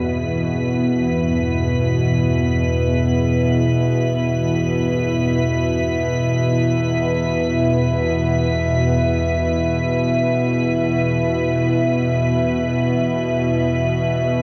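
Dark ambient drone in free time, this cavernous, dark passage is cut from a longer piece and soaked in a huge, wet reverb with a long decay. Up front, a bowed-like drone holds low and tense, its string-like sawtooth tone thickened by detuned unison voices, a noise layer and vibrato, while a filter sweep moves across it for the full 14.4 seconds. Above and around it, a dark analog pad fades in with sustained chords, deep and moody, its detuned square and sawtooth waves carrying a sub octave, a wave-folded edge and chorus. High above sits an icy glass pad on a single held note, crystalline and airy yet full-bodied, shimmering with chorus. A very quiet bronze singing bowl, struck with a wooden striker, rings out meditative metallic arpeggios with slow beating until 12.1 seconds, when it falls away and leaves the three sustained layers to hang in the dark space.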